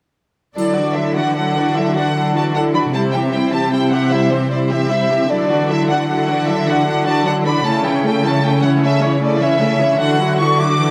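This is a heroic adventure film score cut from a longer piece, soaring and adventurous in 12/8 with a straight feel. A warm symphonic violin section carries the melody up front, its tone smooth and even with light vibrato, while a second violin section adds a rich, expressive line with a soft attack beneath it. A lush viola section fills out the accompaniment, and a cello section anchors the bass up front with a full, bowed sound. A triangle sounds briefly in the background between 0.6 and 1.3 seconds, close and acoustic. The strings move through Dadd9, C and A/C# before settling back on Dadd9, all bathed in the generous reverb of a scoring stage.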